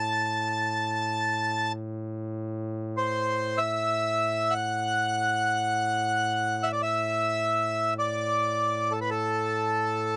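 A dry, close recording with a 1970s studio character and a touch of light reverb frames this mournful, longing Caucasian folk lament, which moves in free time in A dorian with the tuning set at A4 = 438 Hz. A reedy, full accordion sits up front carrying the melody between A4 and A5, while a mellow duduk with a smooth top holds a low drone on A2 beneath it. From 2.4 seconds the music slows until this fragment of a longer piece breaks off at 10.2 seconds.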